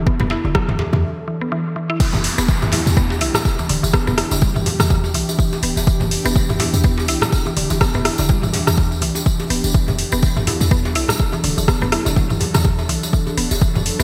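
Bright, 1980s-style digital production with light reverb frames this earthy afro house excerpt in E minor at 124 BPM, swung on the sixteenths, where a brief break gives way to the drop at 2.0 s. Up front sit a deep, overdriven electronic kick and an overdriven deep house kit of metallic hi-hats, crash, rim click and toms with gated reverb, over a boomy 808-style bass, woody mallet-like pluck arpeggios with chorus and digital delay, and an ethereal, detuned pad of sustained chords with ensemble chorus in the background, the bass, pluck and pad each pumping with the sidechain. Very quiet congas played with soft hands and a tight, cracking djembe in the background fill out the percussion, while a jingly, close tambourine and an electronic downlifter in the background both enter at 2.0 s, the downlifter sounding until 5.9 s.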